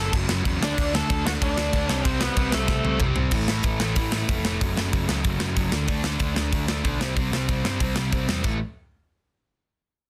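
A dense, heavily limited mix with light reverb carries this rowdy, rebellious punk rock excerpt at 187 BPM, where a tight, up-front metal drum kit with bright cymbals drives an overdriven hollow-body guitar, a sludgy distorted guitar in the background and a growly, punchy picked bass through F#m, D5 and C5 changes, while a biting lead guitar plays a melody only until 3.0 seconds and a drum fill at 2.7 seconds leads into the section that begins at 3.3 seconds.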